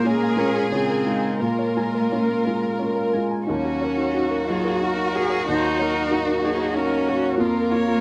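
Melancholic and fragile, this neoclassical piece for piano and strings moves in a rubato 3/4, its harmony shifting from Bbm7 to Ebm7 at 3.5 seconds and moving to Fsus4 at 7.4 seconds. A chamber violin section carries the melody with focused vibrato, while a single cello sings an expressive second line with portamento above a woody, up-front upright piano, a background viola, and a reedy, breathing hand-pumped harmonium that holds sustained chords. A ringing, harp-like synth pluck with chorus adds arpeggios from 0.1 seconds, and the sound is dry and close, in a 1970s-style studio manner with light reverb.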